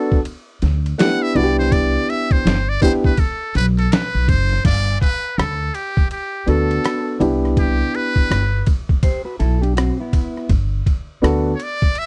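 Relaxed and cool, this jazz-hop cut at 82 BPM in G major swings over Gmaj9 and Cmaj7 chords, with a buzzy, breathy metal-muted trumpet soloing from the start over a dark, long-sustaining grand piano and gritty, pitched-down sampler drums with a thumpy kick, joined at 0.6 seconds by a woody, growly pizzicato upright bass, while a clean electric guitar with lush chorus slips in briefly at 9.0 seconds, all captured in a dry, close 1970s-style studio sound.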